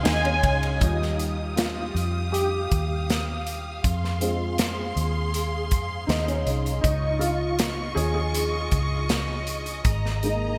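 An emotional, longing pop ballad fragment opens with a distant, soft-attacked violin section holding a high Ab through digital delay, which stops at 0.8 s. Beneath it, a dark, woody upright piano treated with ensemble chorus carries the accompaniment and takes the solo from 0.8 s, over lush symphonic strings sustaining chords with vibrato and portamento and a round, foam-muted electric bass. An up-front acoustic drum kit with a tight kick, medium-tuned snare, hi-hat and ride sits in a pumping room with gated reverb, framing the bright 1980s-style digital production within light small-room ambience.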